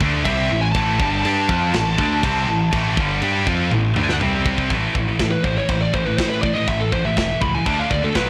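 A blown-out, overdriven recording with light reverb carries this heavy, epic metal excerpt in A minor at 122 BPM. It opens in half time, with three bright background riff guitars: one heavy and high-gain, one scooped, and one sludgy and double-tracked that drops out at 4.7 seconds. They sit over a growling, direct-and-amped picked electric bass and a tight, mid-forward drum kit of kick, snare, toms, crash and china, with a clipped kick and a rolled-off top. A dark high-gain lead guitar enters at 0.2 seconds, and after a drum fill it takes a solo from 4.7 seconds.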